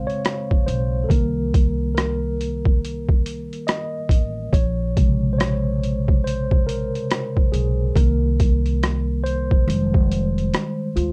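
A lazily swung sixteenth-note groove in 4/4 drives this hazy, melancholic lo-fi hip hop excerpt, with a gritty, pitched-down boom bap drum kit entering at 0.1 s and pressing its overdriven, thumpy kick, hi-hat and rim click up front. A mellow, clean tine electric piano, soaked in plate reverb and heard through its built-in speakers, carries a solo across the whole clip over chords moving from a rootless Bbm9 through Cm7 to a closing Fm9. Beneath it a woody pizzicato upright bass on steel strings anchors the low end, all wrapped in a dark, warm production with light reverb.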